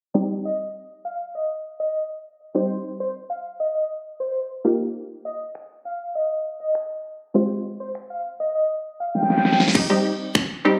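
Bittersweet yet confident, this dance-pop excerpt opens on a lush, detuned sawtooth pluck that pumps with sidechain and chorus, soon joined by a bold, retro octave-doubled lead carrying phaser, delay and vibrato, while a filter sweep runs over Cm, Ebadd9 and Fmadd9 chords. A layered electronic pop kit with a punchy kick, fat snare, finger snaps and crash enters at 5.6 seconds and plays a drum fill before the return to Cm at 9.8 seconds. The mix sits in wet digital room reverb, compressed and low-pass filtered, with the character of a phone recording in the room.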